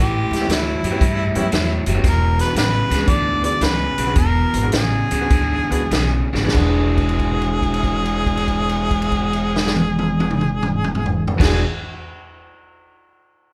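Electric blues shuffle, swaggering and soulful, swung in 4/4 between 93 and 116 BPM in E mixolydian and cut from a longer piece: a vibrato-laden, overdriven harmonica with a soft attack sings a jazzy lead full of scooped notes over a bright, compressed overdriven guitar riff and a woody, growly pizzicato upright bass, while a brilliant, polished upright piano in the background and a punchy vintage drum kit with a rolled-off top join at 0.3 s, the band slowing from 2.0 s until a drum fill at 6.2 s leads into a long held note, captured with light reverb as a band playing live in one room.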